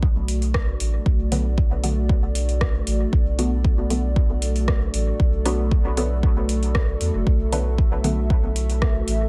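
An overdriven, up-front electronic kick anchors this deep, hazy dub techno excerpt, joined by a round, soft sub bass and a moody, detuned analog pad carrying chorus and 12-bit sampler grit, both pumping to the sidechain, while a muted, mellow chord stab with phaser, dub echo and sidechain pumping enters at 1.3 s and a tape-warm vintage rhythm box adds metallic hi-hats and rim clicks from a large room, set in a digital ambience.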